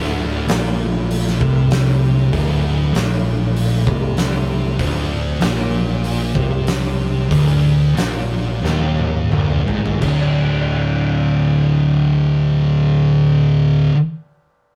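A percussive tonewheel organ with key click and slow rotary swirl holds sustained chords in the background while two thick fuzz guitars grind a D5 riff, a growly, punchy overdriven bass and an oversized low-tuned drum kit with a boomy kick and dark cymbals all launch together in this brooding, hypnotic stretch of stoner doom metal at 84-98 BPM. The organ drops out at 4.7 seconds as the groove begins slowing down, and a drum fill carries the band into a second section at 10.0 seconds, where the guitars and bass press on alone after the drums stop. The rough rehearsal-room sound, with light reverb and a pumping room on the saturated kit, adds to the heavy, murky weight of this excerpt.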